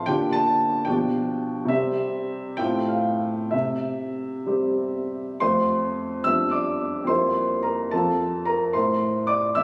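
A romantic classical character piece for solo upright piano in F major, this passionate fragment of a longer work sways in a rubato 6/8 at roughly 61-76 BPM counted in dotted quarters. The woody, open, up-front piano spans F2 to E6, moving through chords such as Gm/Bb, G7/B and C, then F/A and C again, before restating its opening theme at 5.4 s over a pedal-like F bass with G7/F and C7/F. Captured on a phone in the room and bathed in a generous scoring-stage reverb, the sound carries a warm, spacious glow.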